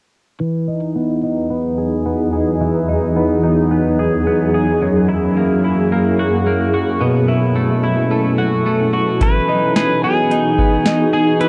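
In a straight 4/4, this floating, dreamy dream pop excerpt opens at 0.4 seconds with bright, twangy twelve-string electric guitar arpeggios under a filter sweep, joined at 1.3 seconds by a shimmering, ethereal pad of detuned, granular sustained chords. At 9.2 seconds a booming analog drum machine with a deep kick, crisp snare and metallic hats arrives up front, as a clean pedal steel guitar with slide and volume swells carries the melody through tape echo. The whole excerpt is recorded on cassette tape, with a short, wet booth ambience.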